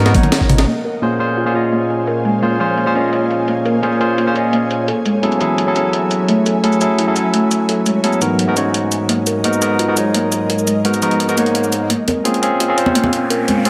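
Set to a straight 4/4 breakbeat at 171 BPM, this melancholic, dreamy fragment of liquid drum and bass opens with a drum fill in which a knocking electronic kick, a dark, crunchy background kit, ringing congas and a brief round sub bass sound together. A filter sweep then runs over the gritty, pitched-up sampler-style kit and the woody, hollow kalimba arpeggios from 0.7 to 11.9 s, while a barky tine electric piano with tape echo sits up front over an ethereal, detuned pad with chorus and tremolo through Bbm9, Gbm9 and Abm9 chords. A background swell and riser enters at 11.4 s, and the congas return during the build-up from 11.9 s, all framed by a lush hall reverb.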